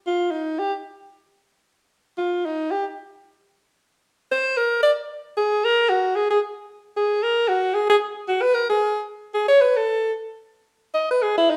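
Close-miked and up front in a large studio with a wet reverb, this short jazz excerpt in Eb major moves in free time with a playful, relaxed mood. A clear alto saxophone takes the solo from 0.1 to 11.6 seconds, its vibrato-tinged jazz phrasing spanning D#4 to D#5 across two matching sections that turn at 6.1 seconds. The live-room sound and the slightly sharp tuning of A4 = 445 Hz give the solo an intimate presence.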